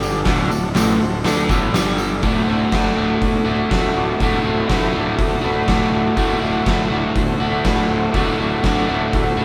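Recorded as a band playing live in one room with light reverb, this raw, rowdy garage rock excerpt moves at 122 BPM in a straight 4/4 in D major. A crunchy, bright, double-tracked overdriven guitar riff sits up front, picked across a range from D2 to F#4. Behind it, a vintage combo organ holds buzzy, overdriven sustained chords with heavy vibrato, while a fuzz-laden picked electric bass adds punchy, warm low end in the background. An oversized, low-tuned acoustic drum kit with hi-hat, kick and a fat snare comes in at 0.2 seconds, sounding dark, smooth, gritty and saturated in a stone room. A jingly tambourine rings in the background until 2.1 seconds, as the chords move from D to G5 and return to D when the second section begins at 2.2 seconds.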